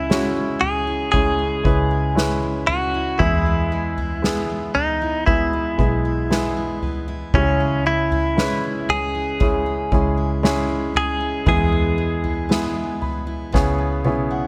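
A dry excerpt of a melancholic, emotional pop ballad in 4/4, led by a bright, twangy, compressed clean electric guitar carrying the melody up front beside a clear, polished baby grand piano accompaniment. Underneath, a dark, full-bodied steel-string acoustic guitar picks arpeggios in the background, a round, foam-muted vintage electric bass holds the low end, and a soft-mallet drum kit with a punchy kick, snare and toms keeps the pulse. The chords move between C# minor and E before settling on C#m7, as the piano adds a fill from 12.5 seconds and the drums add a fill at 13.5 seconds.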